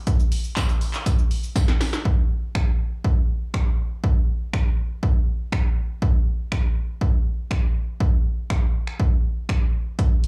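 A punchy analog drum machine sits up front in this euphoric, upbeat pop excerpt, its kick and snare hitting hard with a straight feel in 4/4. The kit blends handclaps, finger snaps, hi-hat, shaker, kick and snare, with a short room on the snare, claps and hats and the sound of having been re-recorded in a large room. A jingly, close and dry tambourine adds acoustic colour in the background from 0.3 to 1.9 seconds. A drum fill at 1.6 seconds leads into a new section at 2.1 seconds, where the drum machine carries on alone until the cut at 10.3 seconds. Overall the mix is fairly dry, with only a small room around it.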